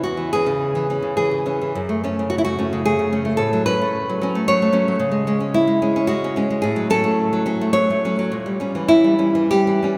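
Bathed in a deep church reverb with a 3.5-second decay, this warm, nostalgic romantic excerpt for solo nylon-string guitar sits up front, fingerpicked in a classical style across a range from E2 to C#5, moving in 3/4 with uneven beats and rubato phrasing through chords of C#m/E, F#m, F#m/A and C#m before reaching an A#dim7 at 8.3 seconds.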